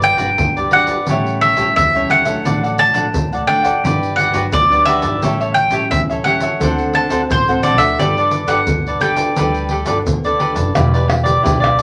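Vinyl crackle and a wet club reverb frame this lively, festive samba and choro fragment in G major at 87 BPM, where an up-front mandolin picks the double-string melody and stops at 10.4 s. A crisp cavaquinho and a fingerpicked classical nylon-string guitar carry the accompaniment through Gmaj7, A7 and D7 before an Em7 at 10.8 s. Underneath, a woody pizzicato upright bass and a small-room kit of egg shaker, pandeiro, tamborim and tight surdo, struck with hard hands, keep the groove going.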